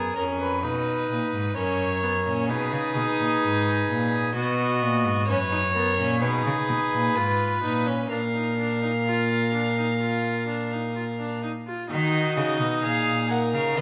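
Classical baroque-style fugue for string quartet at 64 BPM in 4/4, contemplative yet driving, settling into Eb minor from 4.4 s in this short cut from a longer piece. A nasal first violin carries the melody over a dark second violin line and a smooth-topped viola accompaniment, while an up-front, rich cello anchors the bass, all four played in period style with gut-string tone and light vibrato. The two violins sit distant in a moderate recital hall reverb, and the harmony moves through Fm7b5 and Bb before resolving to Ebm at 11.9 s.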